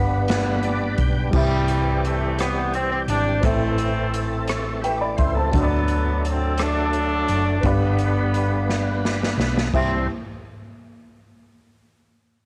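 A straight 6/8 pulse at 57 BPM carries this slow, reverent and uplifting gospel excerpt in C major, where a mellow, distant bassoon sings a single B3 before a tight, up-front horn section with light vibrato takes the melody at 1.3 s over a G, C, Am, D, G, C progression. Throughout, a gritty, overdriven tonewheel organ with key click and slow rotary speaker holds thick chords and adds an early fill, a woody upright piano with audible action noise sits in the background, and a dark, round hollow-body electric bass plays beneath. An airy big-band drum kit with a punchy kick enters at 0.3 s and plays a fill at 8.7 s, while cassette-tape colour and plate reverb tint most of the parts in a moderate booth ambience.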